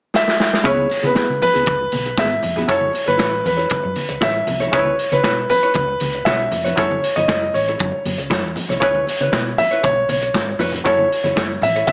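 Driving and danceable, this disco clip opens with a drum fill from a vintage kit, its tight kick, medium-tuned snare and hi-hat sitting up front with a mid-forward, rolled-off tone. A clear concert grand piano carries the melody from 0.2 seconds, intimate and natural, with audible action noise and a deep bass. From 0.6 seconds a dark, clean, compressed electric guitar and a stringy, muted clav with auto-wah through a combo amp fill out the accompaniment. The clav sits in the background beside bright, thin-skinned, low-tuned congas that sound damped and saturated. A round, amped hollow-body short-scale bass joins at 0.7 seconds as the harmony alternates between C#m7 and F#m7. The mix sits in a moderate large studio reverb with a small speaker sound, and the clip is cut from a longer piece.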